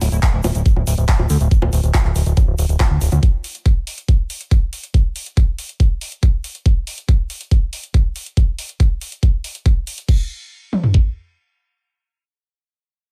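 Set in a digital ambience, this hypnotic psychedelic trance cut opens with a fat, sawtooth-and-square analog bass up front, its filter sweep and moving notch shaping sustained, fast-attack notes, alongside a grainy, bright egg shaker in the background, both stopping at 3.2 s, while an electronic drum-and-bass kit with a knocking kick and toms sits prominently in the mix and a big-room dance kit adds bongos, crash, handclaps and metallic hats until 10.2 s, the layered, produced drums re-recorded in a small room and the drum-and-bass kit carrying on to 11.0 s.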